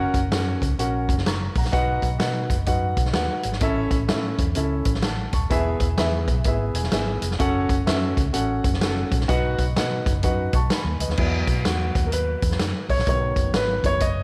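A moderate echo-chamber reverb gives this short cut from a longer uptempo 1960s-style soul piece a studio glow, with the up-front grand piano and drum kit sitting close. At 127 BPM in E major with a swung 4/4 feel, the danceable groove pairs the piano's deep-bassed accompaniment with a round, foam-muted fingered electric bass and a vintage kit of dark cymbals, medium-tuned snare and punchy kick. The piano slips in a fill at 6.5 seconds, then takes a warm solo from 11.2 seconds to the end.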